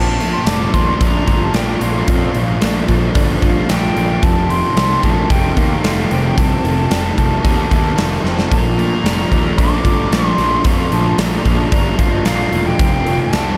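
A dreamy mix soaked in a huge ambient reverb opens this blissful, wistful shoegaze and dream pop excerpt at 112 BPM in Bb major, moving between Bbmaj7 and F7. An airy, distant silver concert flute carries the melody with a straight tone, crisp attack and diffuse ambient delay, while a very quiet, twangy electric guitar through a small old amp plays arpeggios alongside a crunchy overdriven guitar riff with reverse reverb and a thick fuzz guitar riff with distortion and analog chorus, both sitting in the background. A growly, punchy fuzz bass and an up-front arena drum kit, entering at 0.2 s with a pumping room sound and a drum fill at 8.2 s, drive the rock underpinning.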